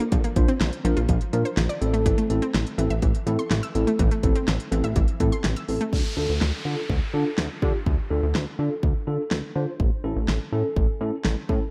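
A round, detuned analog pluck spins chorused, delayed arpeggios over a punchy, up-front electronic pop drum kit with a fat snare and crisp hats, opening this nocturnal, driving synth-pop fragment. A glossy pulse-width synth bass and a clean tine electric piano dressed in lush chorus join almost at once. The pluck drops out at 5.9 seconds as the harmony moves to Dm, and a faint electronic downlifter runs until 9.8 seconds, all set in a moderate hall reverb with a rough, home-demo mix.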